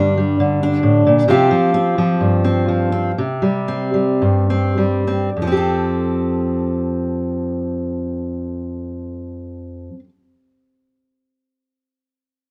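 Heartfelt and nostalgic, this slow folk passage in F major sits between 50 and 71 BPM in a straight 4/4, easing down in tempo through its first 5.3 seconds. A lone fingerpicked steel-string acoustic guitar carries the accompaniment from start to finish, its fresh strings sounding warm and close, with audible finger squeak and a light reverb. The harmony moves through suspended and open chords before settling on Fadd9 at 5.3 seconds, giving the fragment a tender glow.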